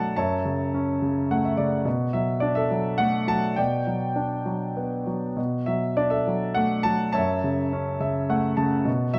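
This relaxed classical excerpt for solo piano moves in a rubato 3/4 at roughly 95-108 BPM in B minor, its clear, worn concert grand sitting up front with deep bass and long sustain under light reverb as it drifts through F#m7, Bm7 and Gmaj7/B, adding brief fills at 1.0 s and 7.7 s across its 9.2 seconds.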